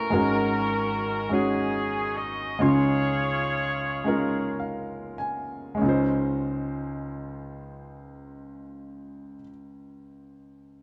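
A clear, vintage-toned horn section with light vibrato carries the tight, pop-style melody up front until 4.6 seconds, over a natural, short-sustained baby grand piano, in this soulful, hopeful gospel fragment in 6/8 and Db major that moves at a slow 31-51 BPM in dotted quarters and gradually slows down, passing from an Ab9sus4 to a Dbmaj9 before the piano plays a fill from 4.1 to 5.8 seconds, with the band captured live in a stone room with a wet reverb.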